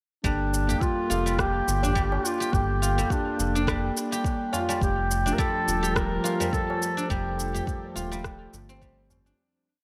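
Steeped in a 2.1-second echo chamber and heavy echoes, this brief, hypnotic and meditative organic downtempo piece places a scooped, vibrato-laden duduk melody up front over a mellow tine electric piano with phaser and sidechain pumping, silvery fingerpicked guzheng arpeggios looping against the bar, a round analog bass with long gliding notes, a soft, tape-warm electronic kick, layered shaker and rim click, and low-tuned tabla in the background, while a warbling, nostalgic lo-fi pad joins at 4.8 s before the fade-out from 6.3 s.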